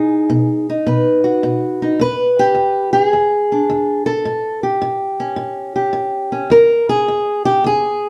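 Acoustic country blues with a laid-back, rollicking swing, this short excerpt cut from a longer piece features a lone fingerpicked, ladder-braced acoustic guitar playing throughout its 8.1 seconds, ranging from E2 to B4. The guitar sits up front with a dark, woody, boxy tone and the character of old strings, while a wet studio reverb places the sound further back in the room. It opens on B, then moves through E7 at 2.0 seconds and A7 before settling on E.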